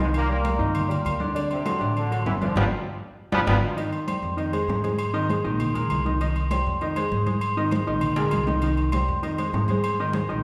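A straight, driving 4/4 salsa rhythm at 198 BPM in C minor sets a passionate mood, with ringing agogo bells and timbales and soft-handed, thick-skinned congas in the background, under a woody, growly pizzicato upright bass and a clear, up-front concert grand piano, while a bright, tight trombone section with light vibrato carries the melody until 3.5 s, then a band accent and drum fill lead into a new section at 3.8 s, heard in the wet reverb of a recital hall.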